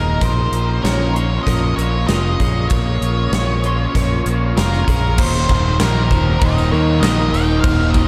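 Rock in a shoegaze and dream pop vein at 97 BPM, this blissful, wistful excerpt layers a dark octave-fuzz lead guitar melody with tape echo over background clean electric guitar arpeggios recorded direct with subtle chorus, a lo-fi, twangy riff from a guitar through a small old amp with reverse reverb, a compressed overdriven guitar riff with ensemble chorus, and a growling, bright fingered bass up front; an airy, polished gated 80s drum kit enters at 0.2 s, and a double-tracked overdriven guitar riff and a jingly, very quiet tambourine join at 5.2 s as the harmony shifts from Bbm to Eb5, in a dreamy mix soaked in huge ambient reverb.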